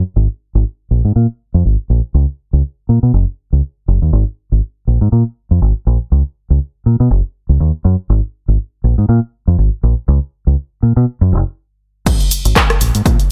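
A dark, round fingered electric bass opens this groovy, sensual filtered disco house excerpt at 121 BPM with a lightly swung sixteenth feel, its foam-muted tone thickened by tube saturation, pumping against the sidechain and shaped by a low-pass filter sweep until a brief stop at 11.6 seconds. At 12.1 seconds the drop arrives as an overdriven, punchy electronic kick, layered and re-recorded in a large room, joins an up-front analog drum machine of crash cymbal, handclaps, hi-hat, rim click and shaker, its hats, cymbals and percussion pumping too. A digital ambience surrounds the mix.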